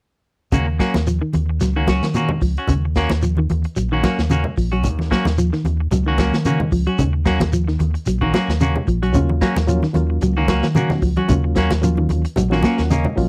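An intense, driving afrobeat groove, cut from a longer piece and resting on a single Ebm7 chord, opens at 0.5 s with a round, dark fingered electric bass up front, a crunchy, gritty breakbeat kit with a tight kick and rolled-off top, low-tuned ringing congas in the background and a grainy shekere. Two clean, picked electric guitars share the groove, one playing arpeggios and the other playing stabs with a slapback echo. At 9.1 s a barky, reedy electric piano joins with light overdrive and fast tremolo, taking a fill at 12.4 s, all captured in a dry, close 1970s-style studio sound.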